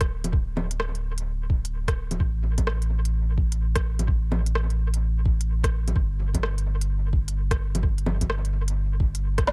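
A deep, round sine sub bass sits up front, sustained and sidechain-pumping beside a soft, tape-warm electronic kick through this 9.5-second excerpt of rainy, melancholic future garage at 128 BPM, swung on the 16ths. Bongos, crisp hats, a rim click and a woody snare from an organic electronic kit trail dub echo behind them, and the whole mix is heavy with echo yet dry of reverb.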